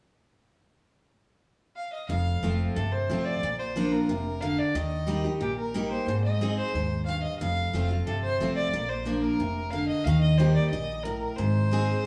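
A straight 4/4 pulse at a brisk 181 BPM drives this joyful, virtuosic bluegrass fragment in Bb major, cut from a longer piece. A dark, woody fiddle carries the melody from 1.8 s, bowed by a single player with light vibrato, sounding distant in tone yet sitting up front. At 2.1 s a picked steel-string dreadnought guitar joins with full-bodied accompaniment, finger squeak audible on its strings, alongside a thumpy pizzicato upright bass that anchors the low end. The chords cycle through F, Bb, Eb and Ab as the band plays live together in one room. A wet stone room reverb wraps the trio, lending the performance a roomy ambience.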